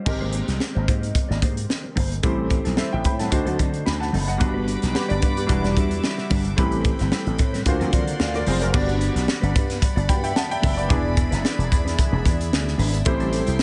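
Driven by a swung sixteenth-note groove at 111 BPM in 4/4, this upbeat, glossy 1980s jazz-funk pop excerpt in G major sets an up-front fusion drum kit with a punchy kick, a high-tuned snare and crash cymbal under a growly slap bass with an envelope filter, a clear, intimate grand piano with audible action noise and analog chorus, and a dark, clean electric guitar riff with lush chorus set in the background, while a soft-attack studio string section bowed sul tasto floats in with sustained chords at 4.4 seconds, over jazzy changes such as Abmaj9, D7b9 and D7alt in a small, pumping room.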